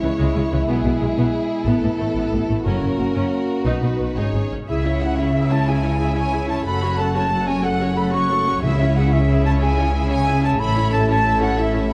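A heroic, swashbuckling film-score passage in C# minor at 122 BPM in a rolling 12/8 opens with the full string body and French horns together, building from the start: a distant, intense violin section carries the melody over a second violin line with a smooth top, lush focused violas, close cellos and up-front double basses, all bowed with vibrato, while the horn section holds warm sustained chords. At 4.7 seconds a mellow, hollow silver flute adds a pure, straight-toned second line, and at 8.6 seconds a very quiet timpani stroke from hard mallets briefly marks a C#. The dark production sits in wet scoring-stage reverb, and this short piece is cut from a longer cue.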